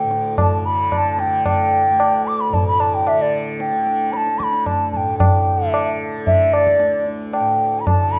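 An airy bamboo bansuri sits up front with expressive, tongued phrases and vibrato, giving this short devotional, radiant excerpt of Hindustani classical music a luminous voice in a flowing seven-beat cycle. Beneath it, a bright tanpura drone of softly plucked, buzzing strings shimmers low. A low-tuned, ringing tabla, close and dry, joins just after the start at 0.1 seconds, all heard in a recital hall with moderate reverb.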